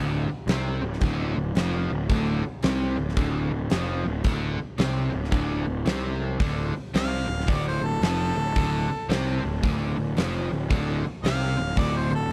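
A crunchy, double-tracked overdriven guitar riff and a growly fuzz bass open together up front in this gritty, smoky blues rock power trio cut with a southern rock edge, swinging in D minor at 112 BPM, before a huge arena drum kit with a fat snare, punchy kick and pumping room sound joins at 0.5 seconds. At 7.0 seconds a bright harmonica enters to solo with scooped notes, its tone overdriven and trailed by tape echo. The mix stays dry, and the clip is cut from a longer piece.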